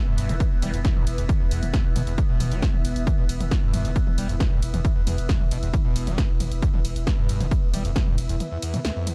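Driving peak-time techno at 135 BPM in a straight 4/4, hypnotic and industrial in mood, this dry, gritty hardware recording is cut from a longer piece and built on an overdriven electronic kick sitting up front, a punchy analog drum machine with tape-tinged snare, hi-hat, ride cymbal and toms, and a thick, saturated sine sub bass held on E1 until 8.4 seconds, when a break begins. Over it a screaming, squelchy sawtooth acid line with a resonant filter sweep and distortion cuts through brightly, while a background drone with moving overtones and a phaser and an ethereal, airy detuned pad with ensemble chorus and built-in reverb both pump against the kick. The kick stops at 8.0 seconds, leaving the remaining parts to carry the last moments.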